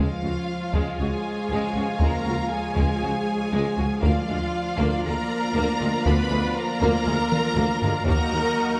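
Heavy-stick taiko drums, compressed and saturated, enter at 0.7 s and drive this dramatic, relentless cut from an epic orchestral film score at 119 BPM in 4/4, with a fill at 7.3 s, while a lush symphonic violin section carries the vibrato-rich melody over a background studio violin second line, close bowed violas, a distant sustained string section, background French horns and very quiet mellow trombones holding chords that move from Db to Bb/D and Ebm, all grounded by clear cellos, very quiet double basses and a roomy tuba on the bass line, in a wet scoring-stage reverb.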